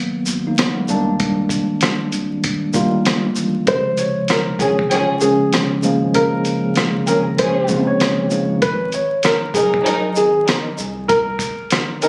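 Boom-bap hip-hop at 97 BPM in Bb dorian with a swung 16th feel, moody and tough, this cut-down passage opens on a clean tine electric piano through a combo amp with medium tremolo and a cassette-tape tint, carried by a muffled, compressed sampler-style kit with a thumpy kick and fat snare and a deep, round sub bass sitting in the background. At 3.7 seconds a dark, woody upright piano takes the melody through analog delay, and lush bowed strings with vibrato add stabs from 4.6 seconds, while the electric piano drops out at 8.6 seconds. The whole mix has the feel of a phone recording in the room, with light club reverb and vinyl crackle, as the chords move from Abm9 and Cm9 to Bbm9, then Ab5 and C7(no3).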